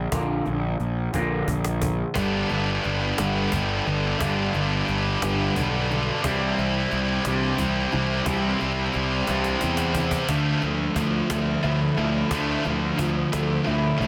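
A twangy, slightly broken-up electric guitar plays phased arpeggios with a slapback echo through a small old amp, over a punchy, overdriven fuzz bass up front and a snappy, close and dry cajon struck with hard hands in 6/8. After a cajon fill, a bright, high-gain distorted guitar riff arrives up front at 2.1 seconds, and a second fill leads at 10.3 seconds into a section where a dark, thick fuzz guitar riff joins from the background. This cut from a longer quiet-loud alternative rock piece feels cathartic and angsty, with light reverb and a dense, heavily limited modern master.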